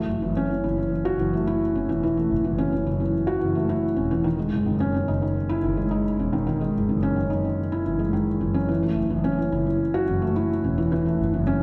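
A soft, felt-muted upright piano plays an intimate riff with delay and audible action noise from 0.0 s, joined at 0.1 s by a distant, bowed double bass section with expressive vibrato, in this melancholic piano-and-strings electronica cut at 108 BPM in F# dorian, moving from F#m7 to C#madd9 and back, all set in a dark, warm recital hall reverb.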